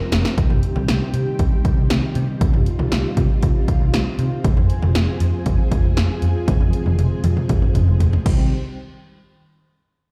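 Heard through a big sound system in a bare stone room with light reverb, this driving, melancholic synth-pop excerpt in C minor at 118 BPM sets a punchy, up-front analog drum machine with kick, snare, hi-hat, toms and crash against a dark, round, foam-muted electric bass and mellow, soft-attack organ-string chords thickened by ensemble chorus, moving from Cm to Fm at 4.4 seconds, with a drum fill from 6.5 seconds before the parts stop at 8.5 seconds.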